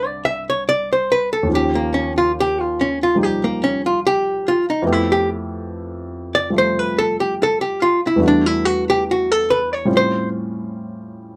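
Jazz ballad at 71 BPM in 4/4, with a lazy swing on the eighth notes and an intimate, tender mood. An archtop guitar carries the melody as a hollow-body solo, its clean, picked electric tone dark and gently compressed, sitting up front until it stops at 10.3 seconds. Beneath it, a baby grand piano supplies accompaniment across the full 11.4 seconds, mellow and natural, with short sustain and audible action noise that adds a close, human texture. The harmony moves from Cmaj13 through Eb9 and Fmaj9#11 to Em11, closing on an altered A7 that leaves the phrase hanging, as befits a piece cut from a longer performance. Close, detailed microphones and very little reverb keep both instruments present and dry.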